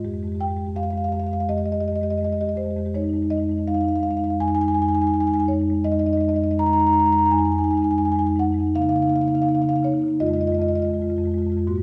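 A solo marimba played with soft mallets sits up front, its padauk bars giving a woody, round tone with an airy, mellow glow. This contemporary classical piece moves in a flowing, reflective mood, with the rubato phrasing letting the 4/4 pulse breathe freely. The single player spans a broad register from F2 up to Bb5, shading the harmony from Fm9 into Fm7, then turning to Db69 at 8.8 seconds before settling back on Fm7. A moderate recital-hall reverb gives each note a gentle halo, and the top end is softly rounded off. This short excerpt of just under 12 seconds is lifted from a longer piece.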